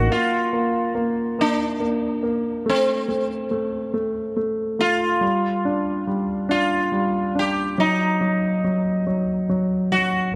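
A buzzing, shimmering sitar carries a tender, romantic pop melody over a clear concert grand piano with deep bass, both up front in a dark production with moderate plate reverb, moving in a slow 6/8 at 47 BPM through a brief passage cut from a longer piece.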